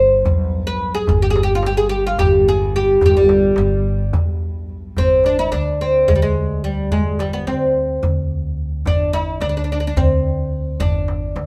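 A fretless, plectrum-plucked oud with double strings leads up front in this stately Turkish makam ensemble passage in 7/8, its woody, deep melody carried over a growly pizzicato upright bass, with a crisp, close and dry metal-shell darbuka entering at 0.3 s under soft hands and a dark, distant bowed cello drone with vibrato sitting in the background until 5.0 s, the band heard playing live in one room with light reverb.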